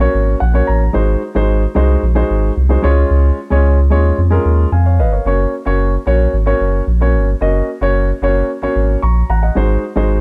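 A thick, saturated sub bass sits up front under a dark, mellow concert grand piano in this short, dry cut from a longer uptempo 1960s-style soul piece at 112 BPM in F# major, its uplifting, joyful mood carried by chords moving from F# through G#7 and C# while the piano adds brief fills at 0.1 and 4.5 seconds.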